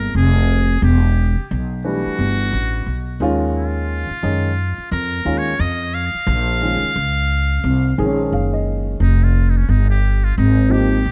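Over a swung sixteenth-note hip hop groove, this mellow, smoky cut from a longer piece sets a buzzy, breathy metal-muted trumpet melody with analog delay up front beside a woody pizzicato upright bass and a dark, vintage upright piano that plays a fill from 7.6 s before the trumpet takes a solo at 9.0 s, all heard in a small-room ambience with a rough home-demo feel.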